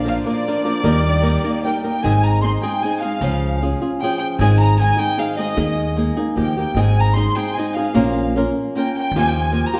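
Up-front fingerpicked flamenco guitar with a woody, old-strings tone drives this festive, romantic mariachi waltz in Ab major at 153 BPM, while a pizzicato upright bass anchors the low end, a vibrato-rich violin section holds sustained chords until 2.0 s, and an intense, clear bowed violin melody sings up front through a wet recital-hall reverb in this brief cut from a longer piece.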